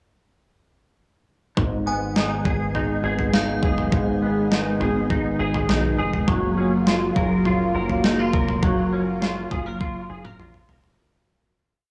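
A slow, thumpy tom-and-kick pulse from an overdriven 12-bit drum machine, sitting up front in a large room, carries this hazy, ethereal dream pop piece from 1.6 seconds, closing with a drum fill as the music fades. Over it, a compressed semi-hollow electric guitar fingerpicks a rolling arpeggio pattern through ensemble chorus and tape echo, while a smooth, mellow analog pad holds sustained chords and a punchy, round analog bass plucks a sliding line. Scattered crystalline FM bell notes glint briefly near the start, and the whole recording has a dry, gritty cassette-tape character.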